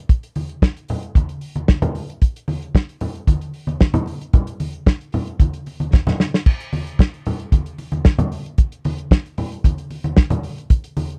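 A warm, acoustic soul drum kit opens this short disco passage in a straight 4/4, with a punchy kick, a medium-tuned snare, hi-hat and dark crash cymbals sitting up front in a small-room sound. Congas join at 0.4 s, bright and low-tuned with a thin-skinned, soft-handed tone that carries a touch of live room. The mood is sultry yet driving, built entirely from this drum-and-percussion groove. A drum fill at 5.9 s leads into a new section at 6.5 s, where kit and congas carry on until the cut. The close, dry 1970s-style studio sound keeps the smooth, dusky drums up front.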